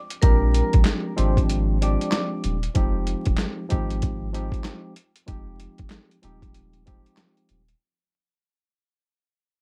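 Gritty, overdriven sampler-style drums with a thumpy kick, medium-tuned snare, hi-hat and handclaps open this reflective, dark boom-bap hip-hop excerpt at 95 BPM in F dorian with a swung 16th feel, joined at 0.2 s by a round, deep dub sub bass up front, a worn, slightly out-of-tune barky tine electric piano in plate reverb accompanying over Bb13 and Fm7, and a metallic, ringing vibraphone melody with slow motor vibrato, plate reverb and tape echo that drops out at 2.3 s, all under vinyl crackle in a dry small-room sound that fades out throughout.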